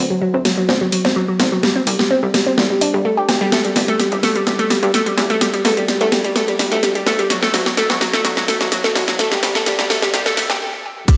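Progressive house at 127 BPM in a hopeful, euphoric build-up, where a bright, detuned analog pluck with chorus and delay spins arpeggios over a funky, sidechain-pumped plucky analog bass in the background and a tape-warm house drum kit with a cracking snare, crash, hi-hat and shaker filling throughout, as a filter sweep moves across chords going from D7 through Gsus2 and Em7 in a lush hall reverb, until a stop at 10.6 s gives way to a punchy, up-front electronic kick at 11.1 s.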